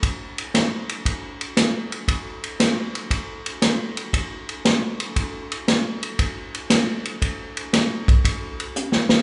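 A greasy, soulful swung jazz groove comes from a vintage acoustic drum kit placed up front, its dark ride cymbal and hi-hat, medium-tuned snare and punchy kick sounding natural with a rolled-off top, set in a moderate concert-hall reverb, before a short fill at 8.8 seconds closes this clip cut from a longer piece.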